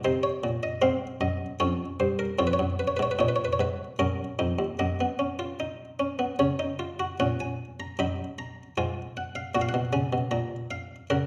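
A classical, baroque-style three-part fugue in F# major, this short cut from a longer piece moves at 76 BPM in 3/4 with a driving yet contemplative feel. A solo buff-stop harpsichord carries all three voices from D#2 to B5, its muted, lute-like pluck sitting mid-forward and up front in the French manner. A recital-hall reverb frames the close, dry instrument, and the music passes into a new section at 7.2 seconds.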